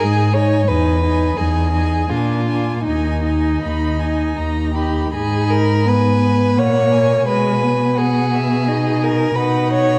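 In a flexible three-beat metre shaped by rubato, this slow romantic movement for string quartet unfolds with a solemn, melancholic character. The first violin carries the melody high in its register with focused, vibrato-laden bowing, though it sits somewhat back in the blend, while the up-front second violin plays a clear, smooth and even second line. The viola supplies accompaniment in its middle range with a rich tone and a smooth top, and the cello anchors the bass with expressive portamento, also placed up front. All four players sound together throughout, as the harmony moves through seventh chords before a new passage begins at 5.1 seconds. A moderate concert hall reverb surrounds the ensemble in a dark production, in an excerpt cut from a longer piece.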